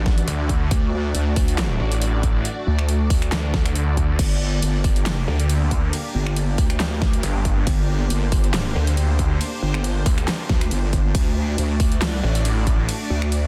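Aggressive and heavy, this short cut from a longer heavy wobble dubstep track rides a half-time feel with a light swing on the sixteenths. Two basses dominate the low end: a wobbling, resonant square-and-sine wobble bass thickened with chorus and overdrive, and a snarling, growling sawtooth bass with a moving notch, pushed hard through distortion and overdrive, both sitting up front. A punchy, layered electronic kick anchors the beat while the overdriven dubstep kit adds a huge snare, bright hats, crash and ride cymbals, finger snaps and handclaps, with the kit re-recorded in a small room. Further back, a lush, thick unison pad sustains chords with a slow attack and long release, colored by chorus, phaser, gritty 12-bit sampler texture and sidechain pumping. The harmony moves from D to G minor at 4.2 seconds and back to D at 11.1 seconds, all in a dry, dense and heavily limited modern mix.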